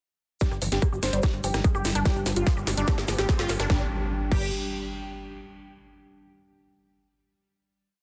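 Intense and hypnotic, this short psychedelic trance piece at 146 BPM in 4/4 builds from 0.4 s to 3.7 s with a drum fill and filter sweeps, driven by a distorted, up-front four-on-the-floor kick, an overdriven techno kit with cracking snare, rim, hats and crash, a grainy hand-played egg shaker, and a punchy, rolling sixteenth-note analog bass between G1 and Ab1. A thick, detuned unison lead with vibrato repeats a riff melody from D4 to C5 through phaser and tape echo, while a woody wave-folded pluck runs a 16-step acid line in the background. Sidechain pumping breathes through a morphing wavetable drone and a warbling, nostalgic lo-fi pad of slowly shifting chords, a very quiet squelchy blip pluck adds short phrases near 2.9 s, and a riser and impact carry the dense, heavily limited mix into a final chord from 3.7 s to 5.3 s.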